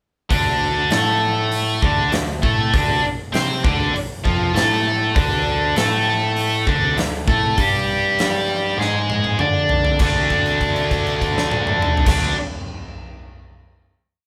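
A tight, bright distorted guitar leads this raunchy, gritty blues rock and southern rock piece at 99 BPM with a double-tracked octave riff, doubled by a round, fuzz-overdriven picked electric bass boogie figure and driven by a huge arena drum kit with punchy kick and bright cymbals, all playing live in one room with moderate studio reverb until a drum fill at 8.8 seconds leads into a final held chord from 10.0 seconds.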